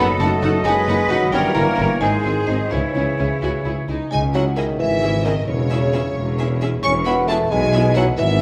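A playful, whimsical orchestral film cue in C# minor opens at once at 88 BPM in a lilting 6/8, with a woody, dry xylophone carrying the melody alongside a rich, distant violin section, while a clear oboe (heard until 3.9 s), a focused second violin section and a pure, very quiet flute ensemble weave second lines. Underneath, a mellow bassoon and a very quiet viola section accompany, a roomy French horn section holds chords in the background, and a ringing concert harp spreads arpeggios across its range. A bright cello section, a soft-edged tuba and an expressive chamber double bass section anchor the bass, all set in the glow of a recital hall's reverb that gives this quirky, magical fragment a storybook sheen.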